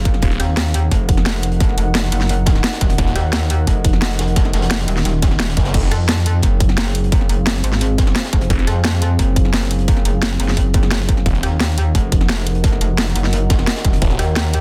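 A dense, heavily limited mix with little reverb drives this tense, mechanical stretch of dark technical drum and bass at 174 BPM, where an aggressive, metallic wobble bass sits up front beside a punchy, tape-warm electronic kick and an overdriven kit of cracking snare, bright hats and crash. Beneath them a very quiet, gritty breakbeat kit with a high-tuned snare adds texture, while a deep, warbling ambient pad with chorus and sidechain pumping holds sustained chords that move from Ebm to Fm and back to Ebm at 11.3 seconds. Short bursts of a swirling, phased and detuned saw bass punctuate the groove, the first arriving at 0.2 seconds, in a passage cut from a longer piece.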